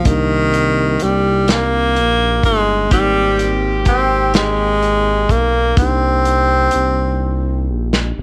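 A breathy, close-miked tenor saxophone with scooped notes and slapback echo carries the melody up front in this sultry, late-night slow six-eight R&B excerpt in C minor at 42 BPM, over a mellow tine electric piano in the background, a smooth sawtooth synth bass with ring modulation and vibrato, and a tight, rolled-off acoustic soul drum kit that closes with a fill at 7.2 seconds, while a horn section adds tight, vibrato-tinged stabs from 2.9 to 5.3 seconds as the chords move from Cm9 to Abmaj7 and back, set in a small room with light reverb.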